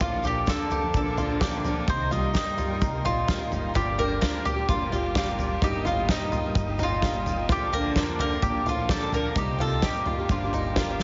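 A straight 4/4 pulse at 128 BPM from an up-front, punchy unplugged drum kit played with bundle sticks, plus a grainy, very quiet tube shaker, carries this stirring, wistful indie folk excerpt from a longer piece, where a woody, double-strung mandolin with tape echo leads over a bowed, vibrato-rich cello line, a growly pizzicato upright bass, twangy fingerpicked banjo arpeggios, also echoed, a shimmering octave-doubled twelve-string acoustic guitar, a faint, slightly detuned upright piano and soft flute-like tonewheel organ chords through a rotary speaker, all cycling through Bbmaj7, Cm7, Gm7 and Eb/G in a building arrangement squeezed into a heavily compressed, dulled radio sound with light reverb.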